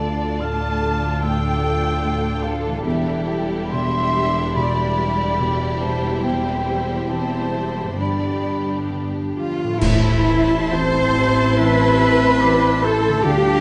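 An emotional, cinematic film-score passage in A minor opens with the full string body, flute, piano and harp together, moving at a slow 69 BPM in 4/4 with an uneven, rubato pulse and a moving, longing mood. A distant, lush violin section carries the melody with vibrato and portamento, shadowed by a second, smoother violin line and an airy, straight-toned flute above, while a close, expressive cello section and a rich double bass section anchor the bass. Underneath, a felt-muted upright piano sits in the background, dark and intimate with audible action noise, alongside a focused viola section and a very quiet, ringing harp playing arpeggios. At 9.4 s a tight, mellow French horn section enters with sustained chords and a very quiet, classical-style clarinet adds a second line, just before clash cymbals and concert bass drum mark an accent at 9.8 s as the harmony arrives on A minor. A clear, lightly vibrato oboe joins in the background at 11.6 s, and the whole ensemble sits in a moderate concert hall reverb with a softened top end.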